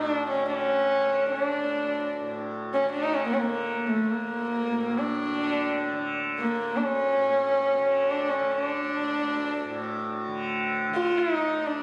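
A dark, close sarangi with light vibrato and gliding portamento sings a longing, introspective melody in raga todi on D over a softly plucked, buzzing tanpura drone in free time, a brief cut from a longer Hindustani classical piece heard through a moderate stage reverb and a phone-in-the-room intimacy.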